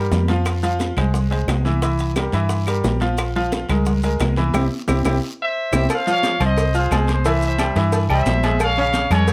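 Fiery and passionate, this salsa excerpt opens with a brilliant concert grand piano up front, its worn, intimate tone and audible action noise sitting alongside a dark, round, foam-muted electric bass. Congas, bongos and cowbell, ringing timbales and agogo bells, woody claves, raspy guiro and grainy maracas fill the background, and a band accent and drum fill lead into the second section at 5.9 seconds. A punchy, tight trumpet section with light vibrato enters up front at 5.4 seconds to carry the melody over the Fm7, C7 and Bbm7 changes.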